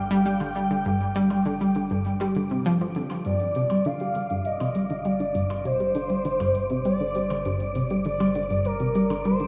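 A straight 4/4 pulse at 100 BPM drives this mysterious, hypnotic stretch of sequencer-driven ambient space music, resting on a G5 chord and set in a vast cathedral reverb with a 6.0 s tail. Up front, a bright, detuned sawtooth pluck with chorus and tape echo plays a riff from G2 to G3, while a smooth, expressive lead with vibrato, portamento, analog chorus, cassette tape colour and tape echo sings a melody between Bb4 and G5. Beneath them sit a deep, dark triangle-and-sine bass on G1, a breathy, wind-like noise texture on D6 with its own reverb, and clicky, overdriven electronic hi-hats and percussion blips with tape echo.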